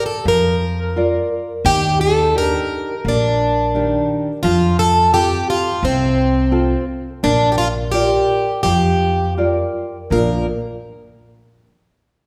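This excerpt from a longer fado-style ballad opens with a bright, shimmering twelve-string acoustic guitar, picked and plugged in, carrying the melody up front in Bb major, its octave-doubled strings giving the line a ringing fullness. Beneath it, a fingerpicked nylon-string guitar supplies deep, full-bodied classical accompaniment, and from 0.3 seconds a pizzicato upright bass adds woody, thumpy low notes. The tempo sits around 86 BPM in 4/4, but the feel is rubato, lending the tender, nostalgic mood an unhurried, breathing quality. The harmony moves from Bb through Ebmaj7 and F before settling back on Bb at 7.2 seconds. A lush recital-hall reverb, as of a church or concert hall, surrounds the trio, and the guitars fall silent at 10.5 seconds, shortly after the passage gives way to a new section at 10.1 seconds.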